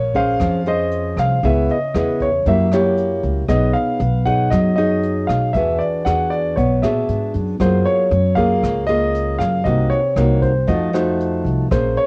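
Melancholic and wistful, this bossa nova fragment is cut from a longer piece and unfolds in a straight 4/4 feel. Up front, a warm baby grand piano carries the melody in a narrow upper register, while a nylon-string guitar, fingerpicked in a classical manner with fresh strings, supplies the accompaniment. An upright bass, plucked and woody with a thumpy, steel-string attack, sits prominently beneath them. In the background, a brushed jazz kit of hi-hat, punchy kick and rim click adds a soft pulse, its sound coloured by cassette tape. The harmony drifts through lush extended chords, from Bbm9 through B69 and Gbmaj9 to a closing turn of Cm7b5 and F7b9. The whole has the intimate feel of a home recording on cassette, touched with light reverb.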